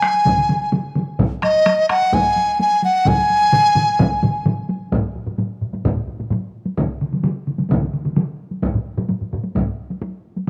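A moderate echo-chamber reverb gives this ceremonial, powerful Japanese taiko ensemble piece a studio sheen, moving at a straight 129 BPM in 4/4. Up front, a large bamboo dizi with a buzzing membrane plays a mellow, hollow, airy melody, tongued and with vibrato plus a slapback echo, from the start until 4.5 s. Beneath it, solo taiko drums struck with heavy sticks carry a vintage, band-limited tone, alongside three taiko ensemble parts: one played with hard sticks sits up front with the same aged, narrow character, another with heavy sticks sounds in a small room, and a third, close and dry, stays in the background.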